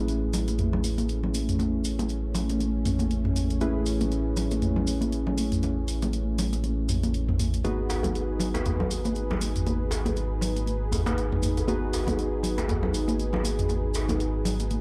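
Round, deep analog bass and mellow, detuned analog key stabs with chorus and dub echo open this hypnotic, driving afro house excerpt with swung sixteenths, quickly joined by a tape-warmed, layered house drum kit with hi-hat and toms, a grainy cabasa in the background, vintage congas played with soft hands, and a smooth, wave-folded analog pad whose sustained chords, shifting from Amaj7 to G#m7 under a filter sweep, carry chorus, while a tight, cracking, distant djembe enters at 7.9 s, all within a dark mix with light reverb.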